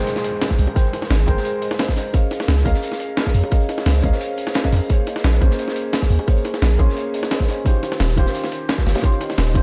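Liquid drum and bass at 174 BPM in Ab major, uplifting and warm, cut from a longer piece, with a dark, mellow concert grand piano carrying delayed chords from Abmaj9 through Db69 and Bbm9 to Eb13 while an airy, metallic vibraphone with fast motor vibrato ringing through dub echo spins arpeggios above it. A background downlifter ends by 2.1 seconds as two breakbeat kits layer in, one pitched-up and gritty, the other saturated with high-pass filtering, joined at 0.5 seconds by a tight, up-front electronic kick and at 0.6 seconds by a deep, sine-like 808-style bass that sustains and decays. Close, dry, high-tuned bongos tap sparingly in the background, and the dark production sits in light reverb and small room ambience.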